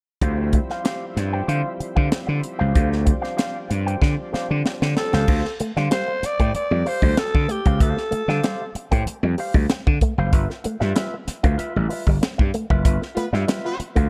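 Cool and hypnotic, this straight-feel funk groove rides a growly, punchy slap bass and a dry, high-tuned drum kit up front, with a scooped, envelope-filtered electric guitar comping throughout, a thick, key-clicking tonewheel organ holding sustained chords on slow rotary until 5.3 seconds, a second twangy filtered guitar riff in the background, a raspy, breathy alto saxophone melody from 5.0 to 8.7 seconds, and a distant horn section adding a brief second line inside a band accent near the end, all under light small-room reverb and a dark production.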